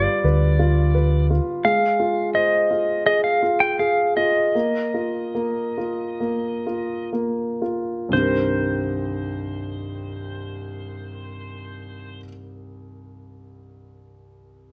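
A bright, twangy pedal steel guitar carries the melody in this heartbroken, intimate acoustic folk-pop ballad, its clean, compressed slide lines played with fingerpicks and shaped by volume swells. Beneath it sits a warm concert grand piano with a vintage character, its deep bass and audible action noise giving the accompaniment a close, personal feel. A dark, round fingered electric bass sounds only briefly at the opening, ending by 1.4 s. The tempo slows from 1.6 to 8.1 s as the harmony moves from G7 through Fm7/Ab and Bbsus4, arriving on Cm7 as a new section begins. The pedal steel falls away at 12.2 s, and the piano carries on alone until the cut, all set in a moderate large-studio reverb.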